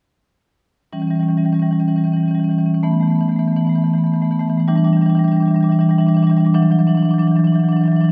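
A moderate recital hall reverb surrounds a single marimba, placed up front, its dark, smooth tone struck with medium hard mallets that give each note a percussive edge. This short excerpt comes from a longer contemporary classical piece for solo marimba, reflective and hypnotic in mood. The marimba plays alone from 0.9 to 8.1 seconds, staying within the range of E3 to D4. Set in E dorian and counted in 7/8 at 222 BPM in eighths, the music moves with a rubato feel. The harmony passes through Em6, Esus4, Em7 and Dadd9/E, with the instrument tuned to A4 = 439 Hz.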